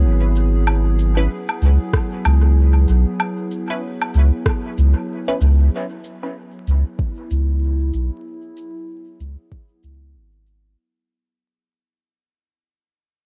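Hazy and spacious, this ambient dub excerpt at 95 BPM in C# minor sets a warbling, nostalgic tape-like pad holding a C#m7 chord over a deep, round sub bass, with overdriven electronic shaker, woodblock and rim click carrying dub echo, a muted, phased chord stab appearing from 1.2 to 6.3 seconds, and a soft overdriven kick up front, all in a dark production dusted with vinyl crackle that fades out from 5.7 seconds.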